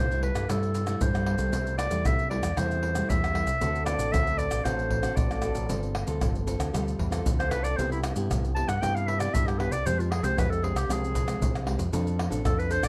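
A straight 4/4 samba and choro groove at 115 BPM in C major drives this playful, festive excerpt, with maracas, pandeiro, tamborim and a deep surdo played up front with soft hands from 0.1 seconds, anchored by a growling, punchy fingered electric bass with overdrive. A clear clarinet in classical style takes a solo melody throughout, sounding distant and roomy yet up front, while a fingerpicked nylon-string guitar adds classical accompaniment with audible finger squeak. The chords move from C6 through D7, G9sus4, Cmaj7 and Fmadd9 to Dm7, captured by close, detailed microphones with little reverb.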